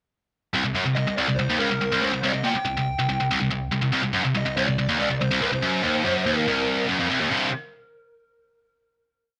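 This heavy, dark metal piece opens at 0.5 seconds with a high-gain distorted guitar that sits up front, double-tracked and bright, picking a single-note riff low in register over a straight 142 BPM pulse in C minor. Moments later a lead guitar through a small cranked amp enters, its overdriven tone warm beside the riff, picking a motif-based melody built in sentence-like phrases higher up. The lead carries a tape echo and stays lower in level than the riff, which dominates the mix. The lead drops out at 6.9 seconds, and the riff section gives way at 7.3 seconds to a final C5 chord that rings out to the close. A moderate studio reverb gives the whole a compact sense of space.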